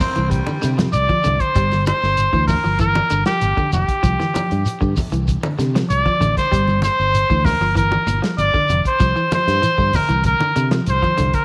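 A clear, up-front trumpet carries the melody from 0.9 s, singing with light vibrato and scooped notes in a vintage, pop-style solo voice. This funky, hypnotic afrobeat excerpt moves at 97 BPM in a straight 4/4. Before the trumpet arrives, a raspy, gritty baritone saxophone plays a brief, distant second line with its own vibrato, scoops and a slapback echo, ending by 0.8 s. Underneath, a slightly broken-up, twangy electric guitar plays fingered arpeggios, while a round, punchy fingered bass anchors the low end. A dry, dark soul drum kit with a tight kick, a medium-tuned snare, hi-hat and a rolled-off top keeps time, joined in the background by low-tuned, soft-handed congas and a grainy, mellow shekere. The harmony circles between Csus24, G5 and Gm7, and a moderate echo-chamber reverb lends the whole a roomy depth.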